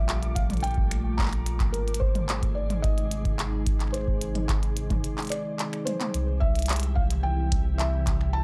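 A straight 4/4 groove at 109 BPM, set by a deep, dry analog kick and an overdriven glitchy kit of finger snaps, handclaps, clicky hi-hat and toms, carries this wistful, playful IDM excerpt, where a soft, thick-felt upright piano with audible action noise and tape echo sings the melody over glassy, chorused FM pad chords and a round sine sub bass, while a grainy, flickering texture murmurs in the background until 6.2 s, all captured as a dry, gritty hardware recording that moves into a break at 5.0 s, with a drum fill at 5.9 s leading into a new section at 6.1 s.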